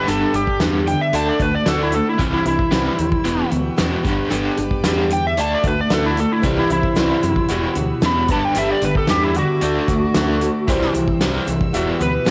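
This folk rock and heartland rock excerpt moves at 113 BPM in a straight 4/4, with a reflective, dusty mood and a slightly sharp tuning of A4 = 444 Hz. An overdriven slide guitar carries a bright, fingered solo up front throughout, colored by cassette tape and analog delay. Beneath it, a biting overdriven electric guitar, double-tracked and picked, plays a riff with tremolo, while a full-bodied jumbo acoustic guitar is picked in the background. A round, dark fingered electric bass and a natural country drum kit with a fat snare and punchy kick form the foundation, and a very quiet chamber string section with a reedy, gut-string tone holds sustained chords. At 6.4 seconds a woody upright piano and a grainy tube shaker join in the background as the chords cycle through G, D, C and Emadd9. The sound is a home cassette recording with light reverb.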